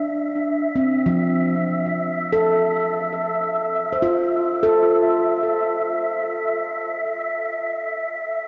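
A ringing, stainless-steel handpan leads this serene ambient passage, its bright arpeggios struck with sharp finger strokes and sitting up front, spread between F3 and C5 and trailed by tape echo. Alongside it, a breathy, wind-like tuned noise texture holds a sustained E5, a dark sine-based layer with a slow attack, long release and its own built-in reverb. The music floats in free time over an Fmaj7 harmony that gives way to an A5 at 4.5 seconds. The handpan stops at 6.7 seconds, leaving the airy wind texture to carry on until 8.5 seconds. A huge, wet ambient reverb with a 7.8-second decay surrounds the whole meditative moment, which is cut from a longer piece.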